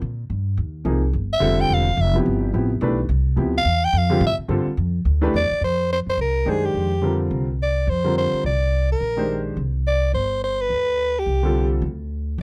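This is an intense, searching jazz fragment cut from a longer piece, swinging in 4/4 at 213 BPM. The upright bass starts at 0.0 s, its woody, plucked steel-string tone sitting up front. The clear concert grand piano joins at 0.8 s as accompaniment, natural in sound and deep in the low end. A growling soprano saxophone enters at 1.3 s and takes a solo through the first section, its raspy, gritty voice close-miked, with vibrato and subtone colouring the line. The harmony moves through suspended chords, F9sus4 and G13sus4 early on, then F13sus4 as the second section opens at 5.6 s. The dry, close studio sound in a 1970s style keeps all three players immediate.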